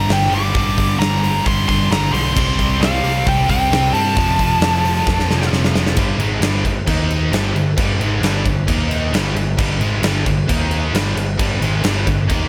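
Lightly reverberant and heavy, this driving hard rock excerpt puts a huge arena drum kit up front, with a punchy kick, bright cymbals and a pumping hall sound. A nasal, overdriven lead guitar with a parked wah carries the melody until 5.5 seconds, while a hollow-bodied overdriven guitar and a pair of scooped, high-gain distorted guitars grind out the riff in the background over a growly, picked electric bass. A drum fill at 5.1 seconds leads into a second section at 6.0 seconds, built on power chords.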